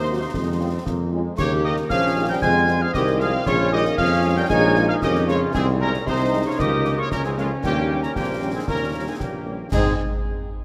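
A festive, proud military-style march for wind band opens with most of the ensemble at once: a dark trumpet section carries the melody with light vibrato, over a punchy, up-front tuba bass and sustained chords from a smooth-topped trombone section set in the background. Around them move several second lines: a wooden piccolo with a pure tone and crisp attack high above, a close-miked, tight woodwind section with vibrato in the middle, and a distant, roomy euphonium lower down. A very quiet, mellow French horn section joins in accompaniment at 0.1 seconds. At 0.3 seconds, concert snare drum, concert bass drum and clash cymbals enter, recorded close and acoustic, with shadowy cymbals. The whole band sounds through a wet concert hall reverb in a straight two-beat march feel, and the passage, cut from a longer piece, closes on a home chord at 9.7 seconds.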